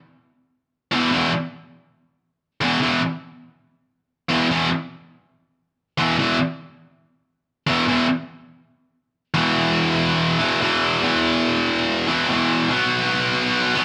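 Aggressive and heavy, this rock excerpt features a lone scooped high-gain electric guitar, bright, picked and double-tracked, sitting up front with distortion in light reverb from 0.9 seconds, working its low register over E5 before shifting to B5 at 12.7 seconds.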